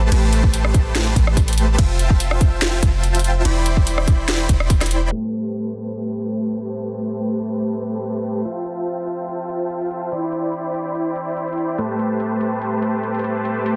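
Opening on a drop, this emotional, dreamy future bass track launches a huge, detuned supersaw riff with sidechain pumping, a low-pass filter and digital delay over a deep, boomy 808-style bass that also pumps and a hard-clipped electronic kick; the kick drops out at 4.8 seconds and the bass at 5.1 seconds, leaving the airy lead and a trap kit of metallic hi-hats, ride cymbal, rim click and sharp snare in studio reverb to carry the swung half-time feel through Am9, Fmaj7 and Cmaj9/E in a dense, heavily limited mix.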